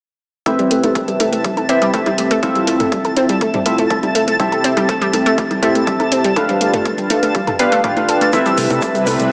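This progressive house excerpt opens at 0.5 seconds with a round, detuned analog pluck arpeggio and glossy, up-front chorused polysynth stabs, both pumping with sidechain and trailed by digital delay, over a punchy overdriven kick, metallic overdriven hi-hats, and tape-warm electronic congas and toms at 122 BPM. A twinkling granular texture with octave-up shimmer arrives at 1.2 seconds, while a filter sweep moves through the polysynth and the chords pass from Cmaj7 through Fmaj7, Am7 and G7, giving a bittersweet yet driving mood in a huge ambient reverb heard through a small-speaker sound. At 8.3 seconds a lush phased supersaw pad and a grainy tube shaker join, followed by a fat, wave-folded analog bass on C2 at 8.6 seconds.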